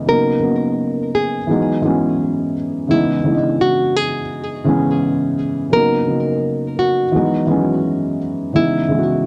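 Hip hop at 85 BPM in C# dorian with a swung sixteenth feel, this hazy, nostalgic fragment from a longer piece sets a boxy, felt-muted upright piano with audible action noise up front as accompaniment, while a small, bright fingerpicked nylon-string guitar carries the melody through tape echo, both parts filtered and bathed in plate reverb over a cassette-tape sheen as the chords cycle from Bmaj7 to Emaj9 to C#m7.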